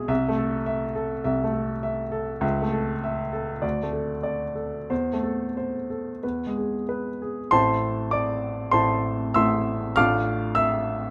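Brooding and passionate, this fragment of a romantic classical character piece unfolds in a flexible rubato for a solo baby grand piano, its sound warm and intimate. The piano sits up front, caught by close, detailed microphones in light reverb, and its natural tone carries audible action noise. The harmony moves restlessly through minor and major colours before the music turns to a new section at 7.5 seconds and runs until 11.1 seconds.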